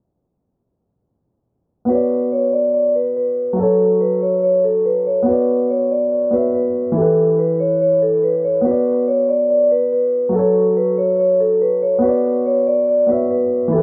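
A metallic, ringing vibraphone carries the melody up front, struck with medium hard mallets and played with the motor off, its line sitting in a narrow upper-middle range and trailing an analog delay through a low-pass filter. This short cut from a longer hip hop piece has an eerie, brooding mood and moves with a half-time feel in 4/4. Beneath it, a felt-muted upright piano supplies soft, mellow accompaniment, sitting just as close as the vibraphone, with an intimate tone, a thin layer of felt and audible action noise. Both instruments enter at 1.9 seconds and play together until 13.8 seconds, cycling through a minor progression that keeps returning to a Bmadd9 chord, with F#m and Em between. A filter sweep runs across that whole span. The echo-heavy mix is darkened by a low-pass filter and bathed in moderate spring reverb.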